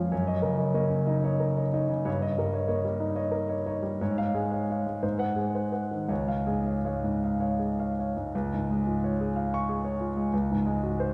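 An intimate concert grand piano plays alone in a hopeful, passionate romantic character piece in a rubato 6/8, its deep bass, long sustain and audible action noise carried in a reverberant concert hall heard from further back, as the harmony moves from Ebm7/Gb through Eb7/G and Ab7 to settle on Db at 6.1 seconds before this brief passage, cut from a longer work, closes on Ab7/Db at 10.3 seconds.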